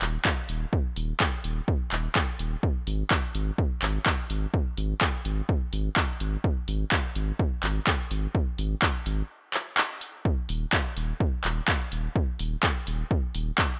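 A saturated sub bass and a punchy analog drum machine with handclaps and hi-hat open this raw, trippy acid house excerpt, joined by an electronic kick drum at 0.3 seconds. The sub bass is deep, thick and sine-like, with a fast attack, sustained notes and sidechain pumping, while the tape-warm drums sit up front in a dry room. A break arrives at 9.3 seconds before the groove returns until the cut.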